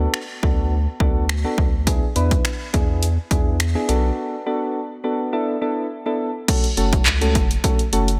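A punchy, tape-warm analog drum machine drives this bittersweet, driving dance-pop excerpt at 104 BPM in F# minor, its kick, hi-hat, handclaps, finger snaps and crash set up front over a round, deep analog bass with a filter pluck and soft, mellow electric-piano-like synth keys with chorus, both pumping to the sidechain through D6, E7, Bm7 and E7sus4, with a break from 4.2 to 6.5 seconds before landing on F#m in light reverb.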